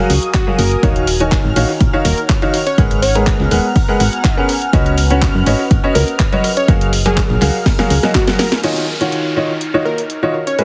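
Piano house with a euphoric, joyful lift, this excerpt from a longer piece centres on a clear, worn grand piano riff up front, with a punchy FM bass, a silky analog string pad and a warbly, nostalgic tape-like pad all pumping to the sidechain beneath a catchy, detuned plucky unison lead that carries a digital delay. An up-front electronic kick and a layered house kit with a cracking snare, claps, hi-hats and crash drive the groove, while a very quiet, gritty sampler-style soul kit adds hi-hat, ride and snare in the background. A drum fill begins, the bass and kick drop away around 8 seconds, and the fill leads into a band accent at 8.5 seconds before an electronic downlifter enters at 8.6 seconds, all within a heavily compressed, radio-style mix with light digital ambience.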